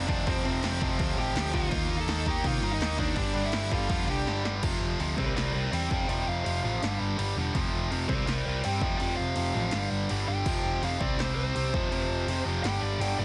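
Energetic and upbeat, this punk rock excerpt drives a bright, double-tracked distorted guitar riff up front over a round, dark hollow-body picked bass and a punchy analog drum machine, until a drum fill at 4.3 seconds drops the band into half time at 4.6 seconds for a smooth overdriven lead guitar solo over a progression of power chords, all under light reverb and a dense, heavily limited modern master.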